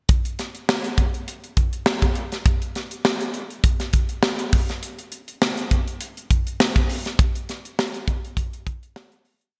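A crisp sixteenth-note groove at 102 BPM in 4/4, lightly swung, drives this short urban, nocturnal pop piece, played by a single up-front acoustic fusion drum kit of hi-hat, punchy kick and high-tuned snare, its gated reverb set in a lush hall with bright 1980s-style digital polish across one verse from 0.1 to 9.5 seconds, fading out from 7.2 seconds.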